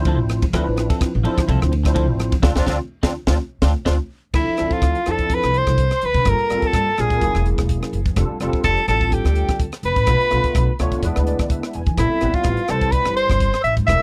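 A dry, close 1970s-style studio sound frames this nocturnal, driving electric jazz fusion excerpt at 126 BPM in D dorian, with a 16th-note swing feel. A barky, lightly overdriven tine electric piano with ensemble chorus, a woody pizzicato upright bass and a crisp drum kit with a punchy kick and high-tuned snare run throughout. A dark, compressed clean electric guitar adds chorused stabs until 3.9 seconds, and the opening closes with a band accent, a piano fill and a drum fill. From 4.3 seconds a soprano saxophone with vibrato and scooped notes carries the melody up front, joined by a bright, reedy concert flute on a second line in the background, over chords moving from Dm9 through E7 to Am9.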